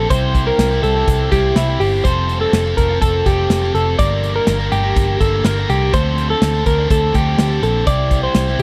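A dry, close recording in a 1970s studio style frames this short, bright cut of jangly indie pop, which moves in a straight 4/4 with a youthful lift. Up front, a clean, compressed twelve-string electric guitar rings out picked arpeggios in its upper register, while a biting overdriven guitar sits lower in the mix with warm, gritty accompaniment. A vintage foam-muted electric bass gives the low end a dark, round, amped tone and is placed prominently. The drum kit enters at 0.1 s with a polished, airy studio-room sound, built on a punchy kick, a medium-tuned snare and hi-hat. The harmony cycles through C, Fadd9, Gm and Dm7 before returning to C at 7.9 s, all within a single section that is cut from a longer piece.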